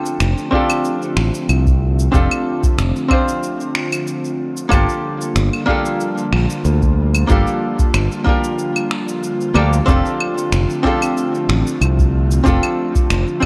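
Lightly swung sixteenths in 4/4 drive this blissful sunset chillout excerpt, where an overdriven electronic kick and a layered electronic shaker, finger snaps and claves sit beneath a punchy, bright fingered electric bass, while a dark hollow-body archtop guitar accompanies through a low-pass filter and tape echo, and a breathy, detuned pad with chorus sustains F6 and Gm7 chords, the mix bathed in concert-hall reverb and the warbly pitch drift of worn cassette tape.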